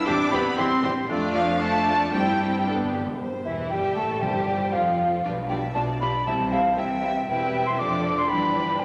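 A graceful, lively classical-period symphonic movement in which lush, vibrato-rich violins carry the melody above a second violin line, expressive violas, cellos with portamento and smooth double basses. An airy, hollow flute sits up front in a second line, while distant clarinet, cor anglais and mellow bassoon lines drop out within the first 3 seconds, a very quiet dark horn section sustains chords throughout, and background timpani enter at 2.7 seconds with a brief fill before the second section, all set in a wet scoring-stage reverb.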